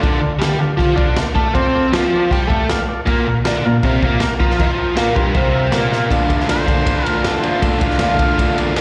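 A straight 4/4 pulse at 158 BPM drives this swaggering, gritty garage rock clip in D minor, with a crunchy, saturated breakbeat kit of tight kick and dark cymbals up front beside a biting, double-tracked overdriven guitar riff with slapback echo, a buzzy vintage combo organ holding sustained chords and adding a fill at 2.3 s, and a mellow harmonica with light vibrato, overdrive and slapback echo taking a solo from 6.5 s after a drum fill at 5.9 s, all heard as a live gig through the venue's PA with recital hall reverb.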